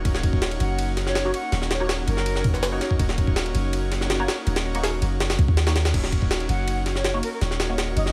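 Nostalgic and atmospheric, this drum and bass excerpt cut from a longer jungle piece moves at 163 BPM in a straight 4/4, resting on a single Ebm7 chord in E-flat minor. A compressed, pitched-up sampler-style drum kit sits up front with a thumpy kick, a high-tuned snare, crash and ride cymbals, and a gritty, tape-toned character in a small room ambience, while a deep, boomy 808-style sine bass with a dark, decaying tail holds the low end beside it. Underneath, an airy, breathy pad sustains soft chords with a slow attack and long release, its chorus and vintage 12-bit sampler grit lending it a bright, detuned shimmer. A mellow jazz flute with a hollow straight tone drifts in from the background at 0.6 seconds, trailing dub echo, and returns at 6.5 seconds. From 1.3 seconds, a muted, filter-plucked dub chord stab adds short, deep hits colored by phaser, ensemble chorus and dub echo. Light reverb and a layer of vinyl crackle give the whole excerpt a dusty, sampled feel, as the passage sits in a drop that restarts its phrase at 5.9 seconds.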